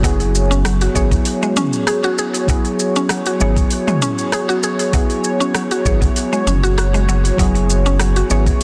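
Hypnotic and earthy, this short organic downtempo fragment at 98 BPM rests on a single F#sus2 chord for its 8.6 seconds, with a lightly swung 16th-note feel. A knocking electronic kick and an overdriven deep house kit of metallic hi-hats, rim clicks, shaker and toms drive it along, while a round, up-front analog bass pumps against the kick and a woody, bright mallet-like pluck spins arpeggios through chorus, cassette-tape grit and tape echo. Muted, felt-like keys, dark and intimate under phaser and echo, fill in the accompaniment beneath a breathy, nasal pad of sustained chords, all set in light reverb with a dense, heavily limited master.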